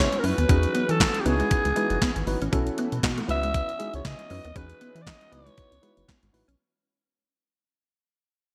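A raspy alto saxophone opens this short, fading clip of slick early-eighties boogie funk, singing an up-front melody with light vibrato, scooped notes and a gritty edge under a trail of delay. Beneath it, a glossy chorused synth bass with a dark, plucky pulse-wave tone and a shimmering pulse-width pad holding sustained chords in the background start at the same moment. A clean 12-bit drum machine comes in at 0.1 seconds with a thumpy kick, medium-tuned snare, hi-hat and handclaps, sitting up front in a gated reverb. At 0.2 seconds a worn, slightly out-of-tune electric piano adds lightly overdriven accompaniment, while a mellow, fingered electric guitar plays a clean riff through analog chorus further back. The harmony cycles through Emaj9, C#m11 and B7sus4 with a gently swung sixteenth-note feel, and the bright digital production wraps the whole groove in light ambience as it fades.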